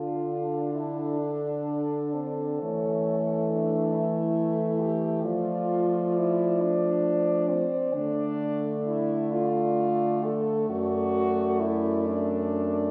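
A resonant recital-hall reverb surrounds this short classical passage for horn quartet, cut from a longer piece and recorded in a church or concert hall. The mood is serene and warm, in D minor at 45 beats per minute in 6/8, with a flexible rubato feel and uneven beats. All four horns play together from 0.0 to 12.9 seconds. The top horn carries the melody between A4 and D5 with a warm, distant tone, while the second horn's line sits up front beneath it. The third horn's accompaniment is clear and present, with light vibrato, and the roomy, mellow bass horn moves between F#2 and F3. The harmony moves from Dm through A/E and Dm/F and back to Dm, settling on D/F# at 10.7 seconds.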